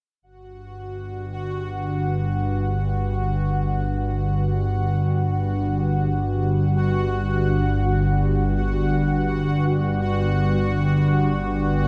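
Soaked in a cavernous cathedral reverb with a long 5.5-second tail, this dark, warm-toned dark ambient drone fragment unfolds in free time with a desolate, unsettling mood. A detuned, organ-like drone sits up front in the low register, its slow-attack sustained tones thickened by ensemble chorus and ring modulation. Entering at 0.4 seconds, a bright, resonant sawtooth texture bubbles above it, its filter stepping at random beneath a chorus shimmer.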